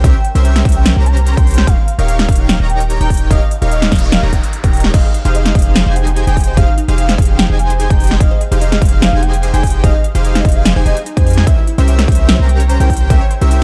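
The production is dark and warm, with little reverb, and this short excerpt of future bass sits in F minor at 147 BPM in 4/4 with a half-time feel, tuned to A4 = 437 Hz. The mood is lush and dreamy, driven by an up-front, deep, boomy 808-style bass with tube saturation and a punchy, overdriven electronic kick, the kick sitting in a small room ambience alongside a big-room dance kit of crisp hats, punchy snare and crash cymbal. A huge, thick, compressed supersaw carries the riff, while in the background a velvety, smooth synth lead sings the melody with chorus, vibrato and digital delay, and an airy, soft lead traces arpeggios. After a background noise sweep from 3.5 to 4.9 seconds, a full-bodied unison pluck joins with its own delayed arpeggios, and the kick drops out at 13.2 seconds. Sidechain pumping breathes through the bass, supersaw, leads and pluck as the harmony moves through C7b9, Eb9 and Fm9 before returning to C7b9.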